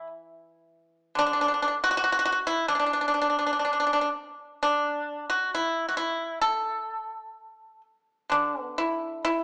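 A bright, percussive solo pipa, played with fingerpicks and sitting dry and up front, opens this serene, flowing fragment of traditional Chinese music, moving freely in rubato around 60-72 BPM across a range from D3 to A4 and shifting into a new section at 8.3 s, all set in a moderate recital-hall ambience with a small-speaker sound, cut from a longer piece.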